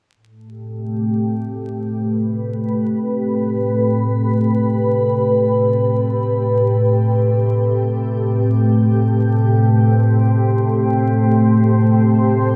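Meditative and hazy, this ambient fragment features a soft, organ-like pad that enters at 0.6 seconds and holds up-front sustained chords, its pure, warbling, vintage tone thickened by ensemble chorus and its own reverb while a filter sweep reshapes it, all set in a wet echo chamber along with a bed of vinyl crackle.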